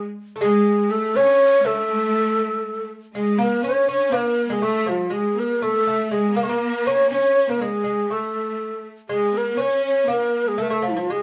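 Persian modal ensemble music in a festive, stately 3/4, this excerpt from a longer piece features a breathy low ney carrying the melody up front with tongued, vibrato-laden phrasing, while a clear, focused bowed cello section and a bright, delicate fingerpicked gut-string lute, entering at 0.4 seconds, share a second line, all heard as a band playing live in one room with wet studio reverb and a shift to new material at 3.1 seconds.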